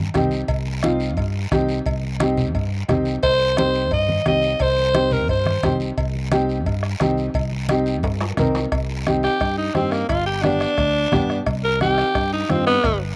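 Cumbia with a passionate, fiery drive, this short cut from a longer piece rides a straight groove under a minor-key harmony that takes on a harmonic-minor colour in its second half. A woody, slightly detuned upright piano sits up front with a boxy tone, while a fingered electric bass, direct and amped, holds down the low end. The percussion bed stays busy throughout: a soft-beaten bombo, ringing metal-shell cowbell and timbales with slapback echo, low-tuned congas struck with hard hands in the background, and a raspy guiro, also touched by slapback echo. An edgy, gritty alto saxophone with vibrato enters at 3.2 seconds for a brief pop-style phrase, and after a drum fill at 8.0 seconds it returns as an up-front solo. The sound is close and dry, recorded outdoors with little reverb.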